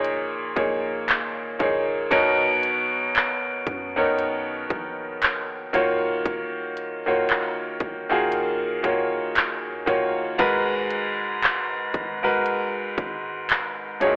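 A slow 58 BPM pulse in 4/4 swings its sixteenths, carried by an electronic industrial drum kit of heavy kick, crisp hi-hats and handclaps that sits up front and was re-recorded in a large room. This longing, moody contemporary R&B fragment in G# dorian, cut from a longer piece, moves through G#sus24, Bmaj7, D#m7 and G#m7 over about 14 seconds. A clear, intimate baby grand piano plays the accompaniment up front, its natural tone carrying audible action noise. Deep in the background, a soft 808-style bass adds round, sine-like notes with a fast attack that decay into darkness. The whole recording is coloured by light reverb and a worn cassette character, with warbling pitch drift and a thin, telephone-like sound.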